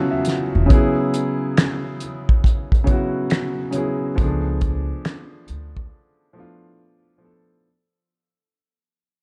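Lo-fi hip hop at a relaxed 69 BPM in F# minor, this short excerpt from a longer piece has a reflective, hazy mood and a swung sixteenth-note feel. An upright piano carries the accompaniment from the very start, intimate and smooth with audible action noise and a vintage cassette-tape colour, moving from an F#sus2 chord to a C#7b9b13 at 4.2 seconds. A cloth-damped, thuddy drum kit enters at 0.2 seconds with finger snaps, hi-hat, a tight kick and a fat snare, its top rolled off in a small-room sound. Pizzicato upright bass with steel strings adds a woody low line in the range E1 to D2. The whole passage fades out from 0.7 seconds, and at 5.9 seconds the drums and bass stop, leaving the piano alone in a break until the end, all within a dark studio ambience.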